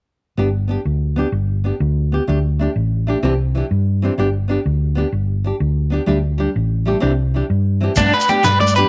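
Light reverb and a small room ambience give this sunny, danceable highlife guitar band excerpt an intimate sound, set in 12/8 with a straight feel. From 0.4 seconds a fingerpicked nylon-string guitar with a deep classical tone sits up front, cycling through G, Dsus4 and Cadd9 twice, over a round, amped hollow-body short-scale electric bass played with the fingers. At 8.0 seconds, as the progression lands back on G, a slightly broken-up electric guitar enters up front with picked arpeggios coloured by tremolo and tape echo. The band fills out at the same moment. A dry, smooth soul drum kit with dark cymbals, a tight kick and a rolled-off top sits in the background. Ringing, closely heard congas played with soft hands and a grainy, mellow shekere join it just before the passage breaks off.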